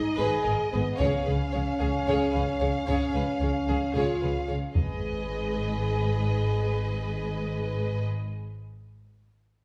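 Heavy-stick taiko drums with a vintage, band-limited sound strike from 1.0 to 4.9 seconds in this dark, heroic cinematic orchestral excerpt, cut from a longer epic film score in 7/8 at 224 BPM in G# minor. A clear, punchy French horn section holds sustained chords over a woody cello section and an up-front, focused double bass section, while a background viola section keeps a smooth, even accompaniment. Two violin sections carry the upper parts, a lush, distant one singing the expressive melody and a close one the second line, all in a reverberant hall setting as the harmony moves from G#m to C# and back.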